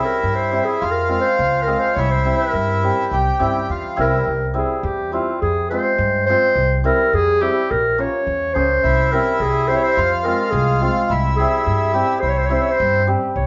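A mellow, classical-style clarinet opens this festive, soulful klezmer piece in C phrygian dominant, taking a solo over reedy accordion, shimmering hammered dulcimer and woody, thumpy pizzicato upright bass in a straight 2/4 at 105 BPM that gradually speeds up. The accordion drops out at 4.3 seconds as the music moves into a new section, then returns at 8.8 seconds with its full, mid-forward second line beneath the distant-sounding clarinet. The band plays live together in a large studio with a wet reverb and a dark, rounded top end, in a passage cut from a longer piece.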